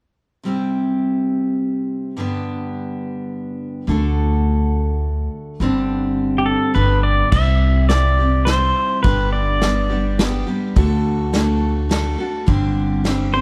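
Honky-tonk and classic country in a nostalgic, heartfelt 3/4 at 105 BPM in C major, this excerpt opens with a bright, full-bodied picked dreadnought acoustic guitar, adds a woody, thumpy pizzicato upright bass at 3.9 seconds, brings in a clean, compressed pedal steel melody with fingerpicks, slide and volume swells at 6.4 seconds, and sets an acoustic small-room drum kit played with bundle sticks, tight kick and medium-tuned snare under it at 7.3 seconds, all within a dark production and light reverb.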